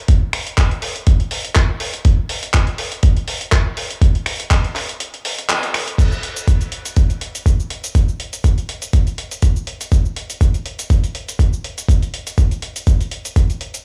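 A thumpy, up-front electronic kick drives this groovy, cosmic nu-disco passage at 122 BPM in 4/4, with a light 54% swing on the sixteenths. Its compressed, sampler-style punch carries a gritty edge, while a dusty soul drum kit, also sampler-style and tape-warm, fills in with hi-hat, shaker, finger snaps, handclaps and crash cymbal at a lower level behind it. Both drum parts sit in a small, dry room that keeps the sound close and tight. After an opening section, a break arrives at 5.0 seconds with a band accent at 5.5 seconds, and the groove moves into a new section at 6.0 seconds. The kick drops out just before the kit finishes, and the recording stops as though cut from a longer piece.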